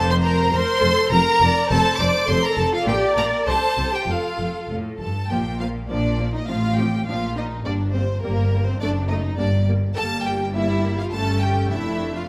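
A graceful, cheerful classical-period movement for string orchestra opens at once with the full ensemble: an up-front violin section carrying the melody, a second violin section on a focused inner line, a distant viola section filling in the accompaniment, and a close cello section joined by a double bass section on the bass. The music moves quickly at 102 BPM in a straight 2/4, beginning in F major before shifting to Bb major at 5.3 s. The bowed strings have a rich, vibrato-laden tone, with the lead violins sounding smooth and even above the ensemble. Beneath them the cellos sit near and steady, while the basses add a focused low end with a smooth top. A moderate scoring-stage reverb gives the ensemble a sense of space through this short excerpt, which is cut from a longer piece and runs to 12.3 s.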